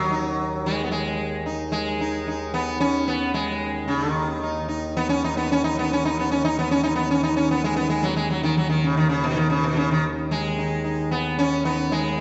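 Indian classical music in raga Malkauns on Eb at 112 BPM in a straight 4/4, solemn and introspective, with a bright, buzzing, up-front sitar carrying the melody between Cb3 and Eb4 over a reedy, breathing pedal harmonium drone, both sounding throughout this 12.2-second excerpt cut from a longer piece, set in a wet concert hall reverb and heard from further back in the room with a dulled top end.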